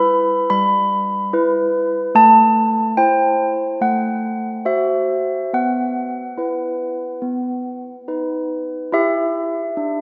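In a straight 4/4 pulse at 71 BPM, this wintry, solemn classical handbell tune in E minor, tuned to A4 = 445 Hz, features solo handbells with soft clappers ringing clear and mellow from G3 to B5, placed up front in a wet church reverb with a rolled-off top, moving through Em/G, Am, F#dim/A, Bsus4 and B before arriving on Em at 8.9 seconds in this brief cut from a longer piece.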